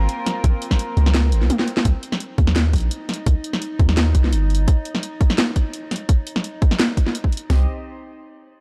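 A half-time drum and bass groove at 170 BPM in C phrygian, dark and spacious, opens on a drop with a brief break and drum fill ending at 1.9 seconds, as an up-front trap kit with a hard-clipped kick and sharp snare joins a layered drum and bass kit with a cracking snare, bright hats and toms, over a deep, mellow sine 808-style bass that falls away at 4.7 seconds, a nasal, reedy chamber cello section in gut-string period style holding sidechain-pumped chords, and an eerie, metallic FM drone with chorus and built-in reverb that sustains until 7.5 seconds, all in a dry, dark mix that shifts from Bbm to Cm.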